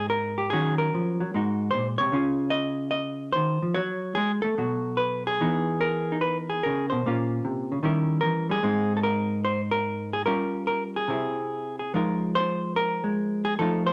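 A clean, dark electric hollow-body jazz guitar, fingered and up front, plays this relaxed, playful solo jazz passage in Ab major at 147 BPM with a rubato swing feel. It moves through rich chords like Abadd9, Dbmaj9 and Emaj7#11 inside a moderate large-studio reverb, and this short cut from a longer piece shifts to a new section at 11.9 seconds.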